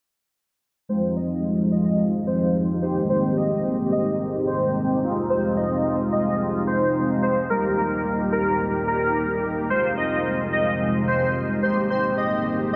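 At 0.9 s three synthesizer parts enter together: an airy, dreamy lead carrying the melody, a mellow synth brass accompaniment, and a string machine voiced as cellos holding sustained chords. This driving, energetic pop passage, cut from a longer piece, sits in F minor at 109 BPM in a straight 4/4, tuned to A4 = 438 Hz, with the harmony moving through Fm7, Abmaj7 and Eb. The lead is a soft, detuned sine tone with a noise layer and a moving notch, placed up front with vibrato, chorus and tape echo. The brass is round, sawtooth-based and dark, its tone evolving through a filter sweep, phaser and chorus. Meanwhile the string machine is full-bodied and vintage, thickened by a sub octave and a soft attack under ensemble chorus. A huge ambient reverb with an 8.8 s decay soaks the mix in a dreamlike wash until the passage ends at 12.8 s.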